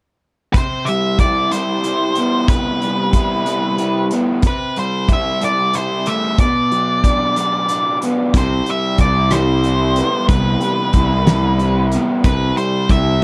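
Restless and cool, this short indie rock excerpt moves in 6/8 with a straight feel and a dry, close sound. A dark, fuzzed-out lead guitar carries the melody from 0.5 seconds, picked and distorted in a narrow upper range, while a double-tracked, crunchy overdriven guitar plays a picked riff beneath it. A loose acoustic drum kit sits up front in a pumping studio room, with a fat snare, a tight kick, hi-hat and rim clicks. The harmony moves through Cmaj7, Am7/C and Bm before returning to Cmaj7. At 8.3 seconds a growly, fuzz-driven fingered electric bass arrives on a low C, thickening the bottom end for the closing stretch.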